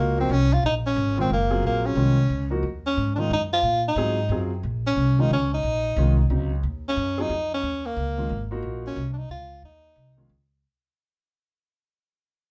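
A tenor saxophone carries the melody up front, with a warm subtone and vibrato, playing in a jazz solo style between Bb3 and F4. This is a jazz waltz in Eb dorian at 180 BPM in 3/4, with a swung eighth-note feel and an intense, searching mood, cut from a longer piece and opening on an Ebm9 chord. The upright bass sits equally forward, plucked on gut strings with a woody, thumpy tone, while the grand piano accompanies a little further back, clear and intimate, with the natural noise of its action audible. The group sounds as if heard from deeper in a wet studio room with a short reverb and a softened top end. A second section begins at 6.6 s as the music fades out, with the saxophone and piano stopping at 10.3 s and the bass ringing on briefly until 10.6 s.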